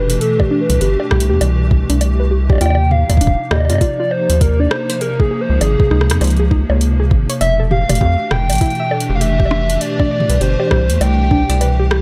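Set in a light reverb, this playful, glitchy IDM excerpt swings its sixteenths over a drifting run of major-ninth chords, with a rubbery, nasal square bass sitting up front and a soft electronic kick joining at 0.4 seconds. A tape-warm analog drum machine adds bongos, metallic hi-hats, rim clicks and toms, while a hollow, flute-like pad with ensemble chorus and 12-bit sampler grit holds the chords. Over them, a dusty, lo-fi pluck spins arpeggios through chorus and delay, and a nostalgic, detuned lead sings the melody with vibrato, chorus and digital delay.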